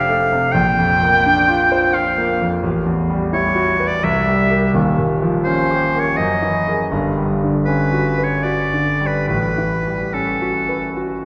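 In a rubato triple metre, this brief, dreamy and pastoral impressionist excerpt pairs a clear, lightly vibrato classical oboe singing the melody up front with a polished concert grand piano whose deep bass and extended harmonies drift beneath it, both bathed in a lush concert-hall reverb heard from further back in the room.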